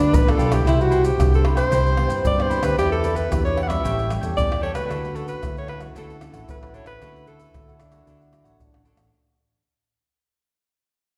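A breathy alto saxophone carries the melody up front from the very start of this joyful, playful samba and choro in D major at 113 BPM, its subtone, scooped notes and vibrato set over a crisp, picked cavaquinho and a fingerpicked nylon-string guitar with audible finger squeak, both in the background, while a growly fingered electric bass through an envelope filter holds the low end. Maracas, a tight surdo, pandeiro and tamborim join at 0.1 s, close and dry with hard hands, and a mellow, whispered trombone slips in a soft second line at 0.7 s as the chords move from G7 through Cmaj7, Em7 and A7 to Dmaj7. The fragment sits in a reverberant recital hall and fades out across its 9.1 seconds.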